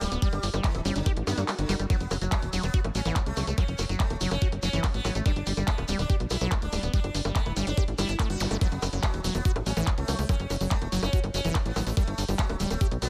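Psychedelic trance at 143 BPM in F# phrygian, this short cut from a longer piece feels intense and psychedelic, driven by a knocking electronic kick held up front and a tight, punchy sequencer bass built from sawtooth and square waves with ring modulation, a filter pluck and a fast attack. Above them, a squelchy, smooth liquid acid bass riff carries a resonant filter sweep and chorus, pumping against the kick alongside a sitar melody whose buzzing, shimmering tone with sympathetic strings passes through phaser and dub echo. A layered electronic drum and bass kit supplies bongos, handclaps and hi-hat, while a grainy, mellow shekere sits in the background in a small room. A very quiet, juicy resonant blip pluck adds a detuned second line with a moving notch and phaser from 0.7 to 11.8 seconds. An electronic swell sounds at 1.2 seconds as the kick drops out from 1.5 to 1.9 seconds, and a brief zap sounds at 8.4 seconds, all in a dry mix over chords shifting between G5 and F#5.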